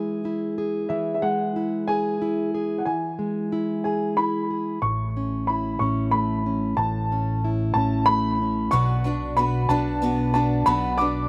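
A dark, woody upright piano carries the hopeful melody up front over a full-bodied fingerpicked steel-string acoustic guitar, both touched with slapback echo, in this short indie folk excerpt at 61 BPM in a straight 6/8 in A major, where a round, punchy fingered electric bass joins at 4.8 seconds and a bright, boxy picked archtop guitar with finger squeak enters at 8.7 seconds as the chords move from E to A to Bm in a dry, open-air sound.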